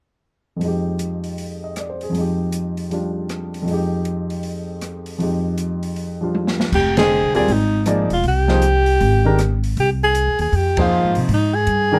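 A cool, searching modal jazz cut in F dorian opens at 0.6 s with a concert grand piano comping on Fm9, its deep bass sitting up front, over an open acoustic drum kit with dark cymbals, a punchy kick and a medium-tuned snare, swinging at 157 BPM in 4/4. A drum fill at 6.3 s leads into a new section at 6.7 s, where a woody pizzicato upright bass and a warm, up-front alto saxophone solo enter, the sax shaping a narrow melody with light vibrato and scooped notes. Band accents punctuate this section, and the close, detailed sound carries light reverb in what is clearly a fragment of a longer piece.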